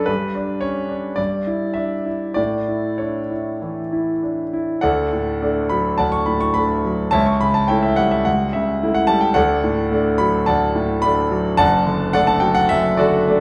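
Flexible rubato stretches a 4/4 pulse that drifts between 94 and 111 BPM, giving this romantic character piece for solo piano a lyrical, hopeful sway. A concert grand carries everything from 0.0 to 13.4 seconds, reaching from a deep bass low in the keyboard up to a clear, polished treble, with audible action noise that makes the playing feel intimate. Set in D major, the opening phrase moves through G, Em7/G and A before a second passage begins at 4.8 seconds, settling on D and passing through A7/C# and back to D, then on to D/F#. The piano's long sustain blooms into a generous large-studio reverb that places the listener somewhat back in the room, even as the instrument itself sounds present and up front. Cut from a longer piece, the recording ends mid-thought.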